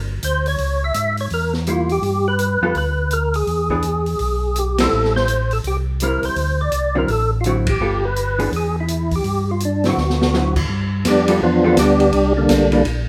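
This excerpt from a greasy, bluesy soul jazz organ trio opens with a mellow, round tonewheel organ bass line, soon joined at 0.2 seconds by the lead tonewheel organ and an open acoustic jazz drum kit. The lead organ is fat and lightly overdriven, with third harmonic percussion, chorus vibrato and a slow rotary speaker, and it sits up front alongside the dark, clean bass organ, which also turns slowly through its rotary speaker with chorus vibrato. A vintage hollow-body electric guitar enters at 1.7 seconds with dark, clean, picked and compressed accompaniment. The drums offer dark cymbals, a medium-tuned snare and a boomy kick in a natural studio-room sound, with band accents hitting together and a brief fill leading into a new section. From 10.7 seconds the lead organ takes a solo over swinging changes, all set in a moderate large-studio reverb.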